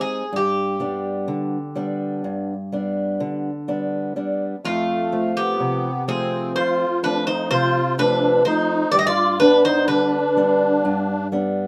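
Greek folk in a dark, melancholic, straight 9/8, cut from a longer piece, with a metallic, double-strung bouzouki carrying the melody up front while a boxy, fingerpicked steel-string parlour guitar accompanies, its finger squeaks audible. At 4.7 seconds a reedy musette accordion enters with a shimmering, wet-tuned second line. The band sits in a moderate studio reverb.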